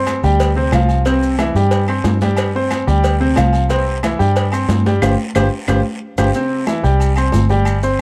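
Salsa with a sunny, danceable lift, this short cut from a longer piece moves at a brisk pace, its harmony rocking between G7sus4 and C. Up front, a bright concert grand piano carries the accompaniment with a brilliant, polished tone and deep bass, joined by a vintage muted fingered electric bass whose foam-muted, round, amped sound sits dark and close. Behind them sits a full percussion section: bright, thin-skinned congas, a low-tuned, saturated cowbell, ringing metal-shelled timbales and agogo bells, woody claves, a raspy guiro and grainy, mellow maracas. Around 5.0 seconds the band hits an accent while a drum fill starts at 5.4 seconds, and the cowbell drops out at 6.3 seconds as the section begins again on C. The production is dark overall, with light reverb giving the ensemble a gentle sense of space.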